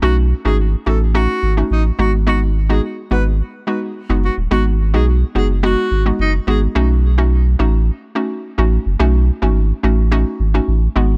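Romantic and sunny, this afrobeats excerpt moves at 107 BPM in a straight 4/4 feel, centered on B mixolydian and cut from a longer piece. A breathy alto saxophone carries the melody from the start until 6.6 seconds, its whispered, intimate subtone tone marked by vibrato, soft attacks and scooped notes in a jazz style, with a touch of delay trailing its phrases. Beneath it, a hollow square pluck with a noise layer bounces through the accompaniment, its fast-attack notes decaying and shimmering with chorus. A saturated sub bass sits deep and thick at the front of the mix, its triangle-shaped tone holding sustained notes with a fast attack. The harmony shifts from B7 to G#m7 and returns to B7 as the second section begins at 6.8 seconds, where the pluck and bass carry on alone to the end, all captured with little reverb for a close, dry sound.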